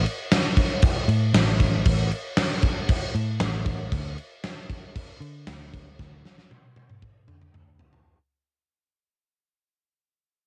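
Hazy and wistful, this short cut from a longer rock piece leans toward shoegaze and dream pop, moving at 116 BPM in a straight 4/4 with its tuning set to A4 = 438 Hz. A vintage muted picked electric bass carries the low end from the very start, its dark, round, foam-muted tone sitting between A1 and D3. A gated 80s drum kit joins at 0.1 seconds with crash cymbal, kick, snare and toms, sounding big-roomed and polished, with a fat snare, tight kick and bright cymbals placed up front, all colored by cassette tape. The whole passage fades out from its opening moment to its close at 8.1 seconds, and a drum fill arrives at 6.0 seconds. Light reverb and the home cassette recording lend the sound a softened, lo-fi haze.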